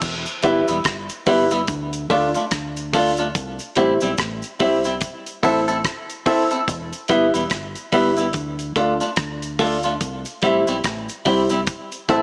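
A dark, mellow concert grand piano plays boxy stabs from 0.4 s in this laid-back roots reggae excerpt at 72 BPM. The piano sits beside a twangy, clean, picked electric guitar carrying tape echo, over a round, punchy dub bass and a dry, damped 70s drum kit with a tight kick, dark cymbals, hi-hat and rim click. A distant cabasa stays in the background as the chords cycle Em, Dm, C and Am under light reverb and a small-speaker sound.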